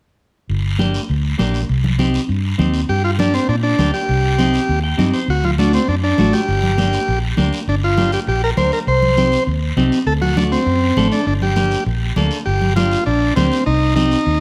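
This cumbia excerpt moves at a driving, fiery 200 BPM in 4/4 with a straight feel, set in G harmonic minor and tuned slightly flat to A4 = 435 Hz. A muted, fingered vintage electric bass sits up front with a dark, round, punchy, amped tone, joined by a raspy guiro and thick-skinned, damped congas played with hard hands in the background. A clean, picked electric guitar adds accompaniment, and it breaks into a brief fill at 4.7 seconds. At 2.9 seconds, a buzzy, overdriven combo organ enters up front with the melody, colored by spring reverb. The harmony cycles through Gm, Cm, D and D7, and the whole mix sits in a moderate large-studio reverb.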